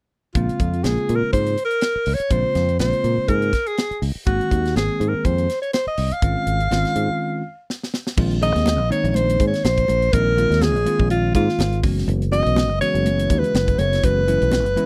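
A 123 BPM groove in 4/4 with a light 16th-note swing drives this intense, funky electric jazz fusion cut in Bb minor, where a clear, close-miked alto saxophone carries the melody with vibrato over bell-like tine electric piano accompaniment, a dark, round fingered bass and a tight, up-front funk kit with a high-tuned snare, moving through a break and drum fill before soft-handed, damped congas join at 8.2 seconds and a very quiet, detuned analog pad with chorus slips in at 12.1 seconds, the whole captured as a close 1970s-style studio recording with light reverb.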